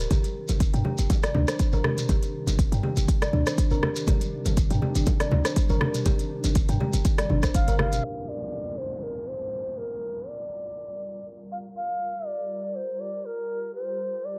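Warm and driving, this afro house cut in G minor at 121 BPM with a light 16th-note swing sets a deep, up-front electronic kick, an afro-pop kit with crisp hats, rim click and toms, ringing background congas, a grainy shekere, a boomy sine-based 808-style bass with tube saturation and sidechain pumping, and woody, hollow kalimba arpeggios with delay over a dark, detuned sawtooth pad with chorus, until the beat and kalimba fall away around 8.0 s, leaving the filter-swept pad, a low-passed studio ambience, an electronic downlifter and an airy, chiffy bass bansuri melody with vibrato (entering at 7.5 s) to carry the piece to 14.4 s.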